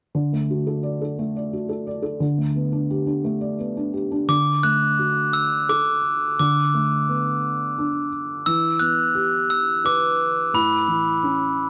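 In a gentle, straight 3/4 at 86 BPM, this tender, innocent children's lullaby in D major opens with a felt-muted upright piano alone, its dark, boxy tone carrying audible action noise as it settles over a D pedal through D and Gadd9/D. At 4.3 seconds a glockenspiel struck with soft plastic mallets enters up front with a bell-like, ringing melody high above the piano, moving through Bm7/D and Em7 to an unresolved Aadd9 before the cut at 11.7 seconds. Light reverb and close, detailed microphones keep the sound intimate.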